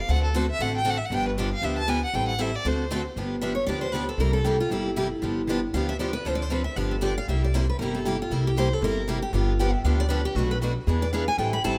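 This rough home demo, set in a small room with light reverb, captures a charming, swinging stretch of acoustic string swing at a brisk 234 BPM in G mixolydian. A close, bowed violin with vibrato and portamento, touched by slapback echo, carries the melody until 3.1 seconds. Then a picked steel-string guitar, bright and sitting in the background, takes the solo line from 3.4 seconds with the same slapback. Underneath, two picked acoustic guitars, one warm and up front and the other boxy with fresh strings, drive the accompaniment with audible finger squeak, while a thumpy, woody pizzicato upright bass on gut strings anchors the low end.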